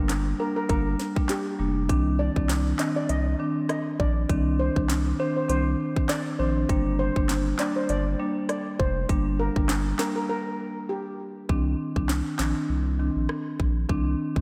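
A thick, saturated sine sub bass anchors this hypnotic, tough dancehall cut at 100 BPM in C minor, with a dark, smooth marimba comping up front, a tight, overdriven electronic drum kit of sharp snare, metallic hats, rim clicks and handclaps, and a shimmering, airy steel pan melody with delay that ends at 11.3 s during a break beginning at 10.3 s, all drifting in a dreamy, lush hall reverb.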